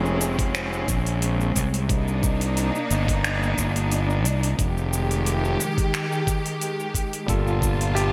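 Lush, clear symphonic strings with vibrato hold sustained minor-ninth chords over a growly, fuzz-overdriven fingered bass in this relaxed, smooth sunset chillout excerpt at 89 BPM with a light sixteenth-note swing, as a produced R&B kit of cabasa, finger snaps and metallic hi-hats with gated reverb is joined by a knocking electronic kick, a barky, lightly overdriven tine electric piano enters at 7.3 seconds and a brilliant vintage grand piano touches a single melody note at 7.9 seconds, all set in a moderate hall reverb with a bright 1980s-style digital sheen.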